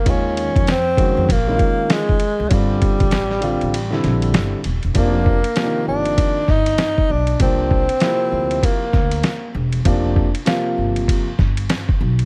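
A breathy tenor saxophone, mellow and smooth-topped with subtone, vibrato and scooped notes, opens this smoky, cool jazz-hop excerpt at 98 BPM alongside woody pizzicato upright bass, as a dark, vintage grand piano with long sustain and a compressed, muffled sampler-style drum kit join in on a swung sixteenth feel. The pitched-down kit sits up front with a thumpy kick, medium-tuned snare, hi-hat and ride, re-recorded in a large room, its kick muted from 3.7 to 5.0 seconds as the harmony shifts through suspended chords such as Eb7sus2 and F9sus4. The saxophone's jazz-style solo ends at 9.6 seconds, leaving piano, bass and drums to carry on within a small room reverb until the piano drops out at 11.3 seconds and bass and drums take the close.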